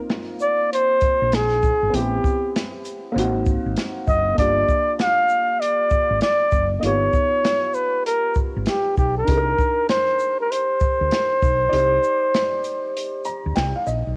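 Cool and nocturnal, this short jazz-hop cut from a longer hip hop piece sets a breathy, whispered flugelhorn up front on the melody, its soft attack, vibrato and scooped notes sounding intimate against a dark, mellow upright piano with audible action noise, a slightly detuned, vintage character and long sustain. An open acoustic jazz kit of hi-hat, boomy kick, shaker and medium-tuned snare swings beneath, joined at 1.2 seconds by a growly, round fretless electric bass with a hollow-body, amped tone. The drums and piano carry a cassette-tape haze in a small-room home recording, and a break from 11.7 seconds brings a piano fill at 13.0 seconds.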